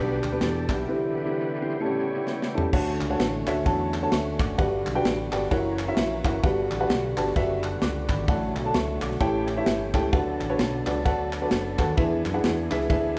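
Uplifting and hopeful, this uptempo gospel cut in D major swings at 130 BPM, opening with a gritty, overdriven tonewheel organ solo, its key click and chorus vibrato heard through a stopped rotary speaker, as a tight funk kit plays along and rolls a drum fill at 2.3 seconds, while a woody, slightly detuned upright piano with audible action noise adds a fill at 5.1 seconds over a round, punchy fingered electric bass and crisp group handclaps, all bathed in a moderate hall reverb.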